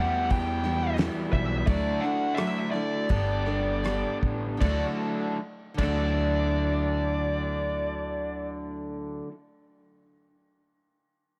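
A dark, up-front overdriven lead guitar carries the melody in this jangly folk rock and heartland rock excerpt in D major, moving at 77-90 BPM in a straight 4/4 that slows down over the first 4.6 seconds. Beneath it sit a fresh-stringed, full-bodied picked dreadnought acoustic, a bright, double-tracked raw garage guitar riff, and a woody pizzicato upright bass placed up front, while a dry, damped 70s drum kit with a fat snare, tight kick and rolled-off top plays from 0.3 to 6.0 seconds. The chords move from Em through Dadd9 and Gadd9 back to Dadd9, all set in a small room with light reverb.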